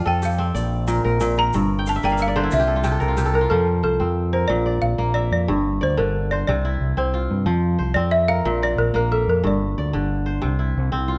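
The kora stands out, up front and fingerpicked, its crisp, ringing arpeggios running from 0.0 to 11.2 seconds and adding a fill between 1.8 and 3.5 seconds. This is a short, flowing and hypnotic piece of West African string and xylophone music in F major, moving at 122 BPM in a straight 12/8. A balafon played with rubber mallets carries the melody with a woody, round, dry tone, featured as a solo at the start before stopping at 9.9 seconds. Underneath, a growling fingered electric bass sits up front, amped and overdriven. A grainy, bright tube shaker adds close percussion only near the opening. The harmony circles through F, Bb, Gm and C in a moderate recital hall reverb, and the section is cut from a longer piece.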